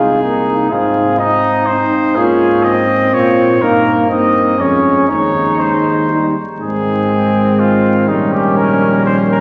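A soaked church reverb and a layer of vinyl crackle surround this short, stately classical passage for brass quintet, cut from a longer piece and moving in a triple metre with a triumphant bearing. Up front, a clear trumpet with a smooth top carries the melody, while a flugelhorn with light vibrato sits distant and roomy beneath it on a second line. A close-miked French horn with a soft, mellow attack and a warm euphonium with gentle vibrato fill in the accompaniment. A tuba, also distant and roomy with light vibrato, anchors the bass. All five parts play throughout. A new section begins at 6.6 seconds, and the harmony settles onto a dominant seventh at 8.1 seconds.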